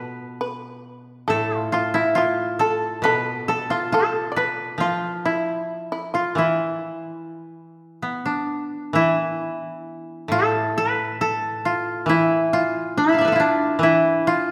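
Rubato at around 68 BPM in 4/4, this calm, austere passage of Japanese chamber music in E sen, cut from a longer piece, sets a woody, fingerpicked koto melody up front over a lower koto accompaniment with a bright, dry attack, while a buzzing, percussive plectrum-plucked shamisen adds a second line until 8.0 s, all within the moderate reverb of a church or concert hall.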